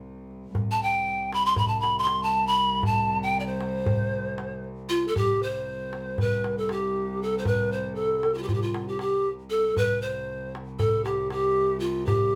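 An airy bamboo pan flute leads this passionate, festive Turkish makam ensemble piece, playing up front from 0.7 seconds with crisp, chiffy attacks, expressive vibrato and lifted highs as its melody ranges from F4 to C6. Underneath, a rich studio cello section holds a bowed drone on C2 from the very start, its gut-string tone sounding nasal and reedy in a period style. A darbuka enters at 0.3 seconds, its clay shell and natural skin struck with hard hands in a close, dry, acoustic sound. The music moves at 234 beats per minute counted in eighths, in a straight 9/8 metre, and shifts into a new section at 5.2 seconds. The band plays live together in one room, framed by a short, wet studio reverb, and the recording is cut from a longer piece.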